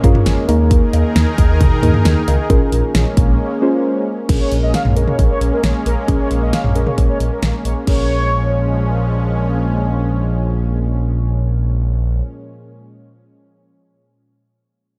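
Light reverb and digital ambience frame a dark, warm production in this melancholic, cool synth-pop excerpt. Muted, felt-like synth keys with a warbling, vintage character open with a fill and sit over a lush, detuned unison pad and a smooth, gliding synth bass with portamento. Meanwhile, an up-front pop drum kit with a punchy kick, fat snare and cowbell plays until 8.0 s, with a brief break in the music from 3.4 s to 4.3 s. A mellow, brassy synth line with ring modulation and digital delay adds a second voice from 4.4 s to 9.2 s.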